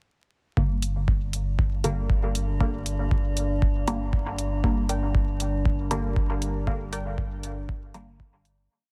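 A four-on-the-floor overdriven kick and closed hi-hat drive this meditative, nocturnal dub techno piece, where a round analog bass holds the root beneath sparse, muted chord stabs carried by phaser and dub echo, a metallic, inharmonic drone enters at 2.0 s, a higher chorused stab riff with cassette-tape grit appears at 4.9 s, and a warbling, moody pad arrives at 5.4 s, with sidechain pumping on the bass, stabs, drone and pad, vinyl crackle over the dense, heavily limited master, and a closing fade-out.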